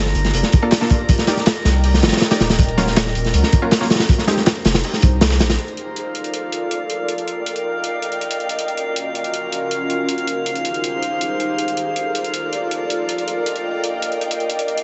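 Drum and bass with a jungle edge, this nostalgic, dark cut from a longer piece runs at 160 BPM in a straight 4/4, opening on a drop that lasts until 5.6 s. There, a crunchy breakbeat kit sits up front with a punchy kick, gritty snare and hi-hat, joined by a thick, saturated sub bass and a bold, layered orchestra-hit-like synth stab that sits in the background with dub echo from 0.6 to 4.4 s. Throughout, an ethereal pad holds slow-attack, detuned chords through ensemble chorus, while a glassy texture of drifting sine overtones floats above, both carrying on to the end. After 5.6 s the heavy kit and sub drop away, leaving a tape-warm, sampler-style breakbeat of hi-hat and snare, thinned by high-pass filtering, to tick under the pad and glass harmonics. The harmony moves through minor ninth chords such as Gm9 and Cm9 before settling into Bbmaj7/F and Ebmaj9/Bb. A plate reverb and small room ambience frame a heavily compressed, radio-like sound with vinyl crackle and a dulled top end.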